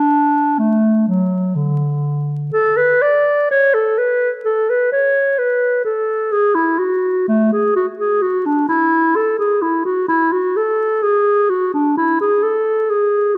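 Dance-like and radiant, this short cut from a longer baroque-style fantasia features a single clarinet playing entirely alone. The tempo sits around 64 BPM in 4/4, but the phrasing breathes freely with rubato. The clarinet has a mellow tone, a soft attack and a smooth top, ranging from D3 to D5 in a classical style and sitting up front throughout its 13.4 seconds. The music opens in D major and moves to A major at 3.5 seconds, tuned slightly low at A4 = 437 Hz. A moderate recital hall reverb surrounds the instrument, and a vinyl crackle lends an aged patina to the sound.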